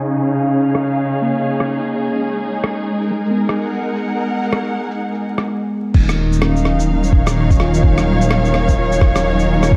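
A warm, lush string section holds sustained chords up front through a filter sweep over the first 5.9 seconds, with muted felt-like synth keys and a faint flickering grainy texture beneath, while a muffled, tape-softened sampler-style kit of crash, rim click and shaker ticks along in swung future garage at 127 BPM in Eb minor, until a deep, rumbling detuned saw bass and a thumpy, pitched-down kick arrive at 5.9 seconds to deepen this rainy, wistful, reverb-soaked excerpt dusted with vinyl crackle.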